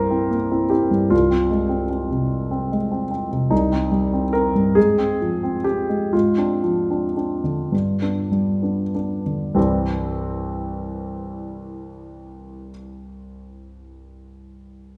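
A romantic classical character piece for solo piano, this stormy, passionate fragment in rubato 6/8 (31-51 BPM in dotted quarters, tuned to A4 = 442 Hz) sets a clear, worn concert grand with deep bass and short sustain up front in a moderate recital hall, spanning C2 to C5 as harmonies move from C7 through Fm/C, Cm, Fm/Ab, Dm7b5/Ab and G7, slowing from 2.3 to 9.6 seconds before arriving on C as a brief second section begins at 9.6 seconds.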